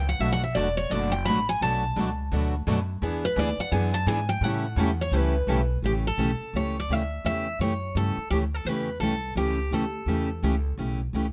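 This is acoustic string swing in the jazz manouche style, charming and playful, moving at a brisk 170 BPM in 4/4 with a swung eighth-note feel in A mixolydian, cut from a longer piece. A bright, full-bodied picked steel-string dreadnought guitar carries the melody up front, taking a solo through the first 5.8 seconds. Beneath it, a pizzicato upright bass with gut strings gives a woody, dark, thumpy foundation, also placed up front. Two picked concert-style steel-string guitars supply the accompaniment: the louder one has a warm tone with audible finger squeak, while a softer second one drops out at 5.6 seconds. The harmony moves from Bm7 to E7 to A7, and the close, detailed miking with little reverb keeps the whole group intimate and dry.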